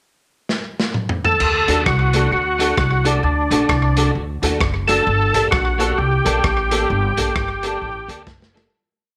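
A crunchy breakbeat drum kit opens this driving, mischievous ska piece with a fill at 0.5 s. Its punchy kick, dark cymbals and side-stick backbeat sit up front in a small room with slapback echo. At 1.3 s an overdriven tonewheel organ takes the melody in short call phrases, thick and percussive with chorus vibrato, and a moment later, at 1.4 s, a woody pizzicato upright bass joins with a walking line and slides. Behind them, an electric guitar at the edge of break-up plays compressed off-beat chops through ensemble chorus and slapback echo, while a slightly detuned, boxy upright piano adds off-beat stabs, all over a swung 131 BPM groove in G harmonic minor that moves from D to Gmadd9 under light reverb. Another drum fill arrives as the piece fades out, ending at 8.7 s.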